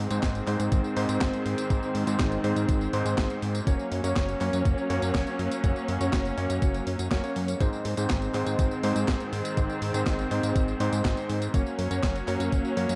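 Bittersweet and danceable, this italo disco excerpt moves between Ab and Gb chords as a dark chamber string section holds soft, bowed sustained chords with light vibrato alongside clangy, vintage stabs from an electric grand piano carrying delay. A fat, detuned analog bass with saturation and filter sweeps anchors the low end, while a thumpy, overdriven electronic kick and a clean 12-bit drum machine of handclaps, hi-hat, snare and tambourine drive the groove in a small room. Light digital reverb lends the mix a glossy sheen.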